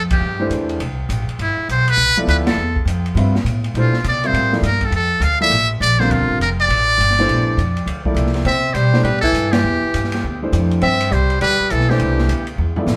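A buzzy, metal-muted trumpet carries the melody up front in this hypnotic, spiritual modal jazz excerpt, swinging at 204 BPM in C major over a woody pizzicato upright bass, a dark-cymballed drum kit with a boomy kick, and an intimate grand piano whose action noise is audible. The harmony moves from Cmaj9 to Bbmaj9 and back to Cmaj9 at 8.5 seconds, where a raspy, growling alto saxophone enters with a low second line. The band hits accents together, and the drums play a fill at 12.6 seconds, all captured live in one room with moderate reverb.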